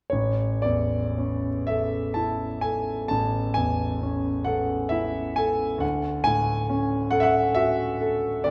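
A smooth, vintage-toned concert grand piano with deep bass sits up front in this brief excerpt of a dreamy, serene romantic nocturne, unfolding in a flexible rubato 12/8 across a range from A1 to A5 and moving from an A chord to Dmaj7 at 5.8 seconds, wrapped in the lush, lingering reverb of a recital hall.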